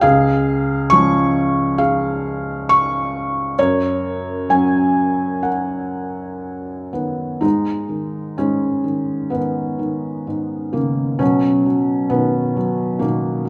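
Wistful and dark, this rubato solo classical piece, cut from a longer work, features a felt-muted upright piano that sounds soft, mellow and intimate up front, moving through two sections with a shift at 7.4 seconds, its tones drifting into the wet reverb of a recital hall.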